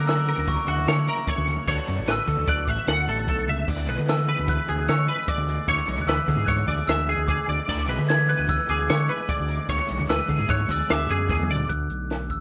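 This wistful, intricate slice of math rock and midwest emo, cut from a longer piece, moves in 5/4 with a straight feel, its harmony circling F#7, Bm7 and E7 before settling on D6. A glockenspiel struck with soft plastic mallets carries the melody in a high, bell-like, airy register, while an up-front, clean, compressed twelve-string electric guitar handles the accompaniment. Behind them sit a second bright, twangy twelve-string guitar spinning arpeggios thickened by ensemble chorus, and a crunchy, double-tracked overdriven guitar riff treated with tremolo. The overdriven fingered bass stands forward with a round, punchy tone, and a compact cocktail kit adds a dry, natural sound with a high-tuned snare, punchy kick drum, crash, hi-hat and toms. A drum fill at 11.3 seconds leads to 11.7 seconds, where the arpeggios and riff stop, all set in the studio ambience of a rough home demo mix.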